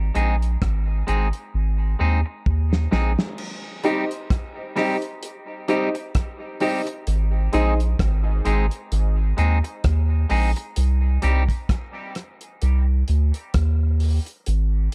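A deep, round sub bass opens this meditative, hypnotic dub reggae excerpt in C minor at 65 BPM with a swung 4/4 feel, joined almost at once by a bright, scooped clean electric guitar trailing dub echo and a dry, damped 70s drum kit with dark cymbals and a tight kick that plays a fill from 1.5 to 3.4 seconds, while a woody upright piano adds echoing stabs between 3.8 and 7.8 seconds over Ab and Cm chords in a dark, warm small-room mix.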